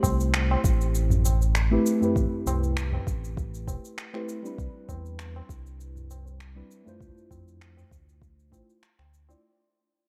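A smooth, gliding sawtooth-and-square synth bass sits up front with sidechain pumping in this hypnotic, meditative organic downtempo excerpt in A minor at 99 BPM, its swung 16ths moving through Am7, Cmaj7 and Dm7. Muted, felt-like synth keys with a soft, intimate noise layer drift through chorus, phaser, low-pass filtering and tape echo, while a low-tuned, saturated tabla, overdriven electronic cabasa and finger snaps, and a soft overdriven kick that drops out at 8.7 seconds fill in the groove. The dark production wraps it all in light digital reverb as the fragment fades out over its full 9.4 seconds.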